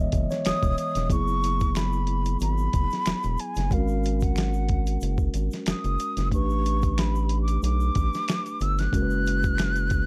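A mellow tine electric piano opens this smooth, introspective R&B and neo-soul passage, heard through its built-in speakers over a round, deep analog bass that sits up front with a dark, sustained tone. A dusty, sampler-style soul drum kit joins at 0.1 seconds, compressed and gritty with a thumpy kick and a medium-tuned snare, while a tube shaker and finger snaps stay in the background with a live-room feel. At 0.5 seconds a breathy concert flute takes the melody, expressive and tongued with vibrato and lifted highs, its range reaching as high as F#6. The groove moves at 92 BPM in 4/4 with a light 16th-note swing, and the harmony drifts through suspended ninth chords: F#9sus4, G#9sus4 and A9sus4, settling on F#sus4. The production is dark and warm, with little reverb, in this brief section cut from a longer piece.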